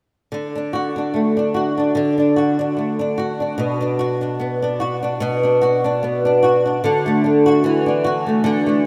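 Sunny and carefree, this short pop excerpt moves at 74 BPM in D major with a gentle sixteenth-note swing, cut from a longer piece. A bright, double-tracked acoustic flamenco guitar sits up front, fingerpicked as accompaniment through D and Bm before shifting to a Dadd9 at 6.8 seconds. The rough home demo mix is bathed in a lush, wet hall reverb that lends the playing a spacious glow.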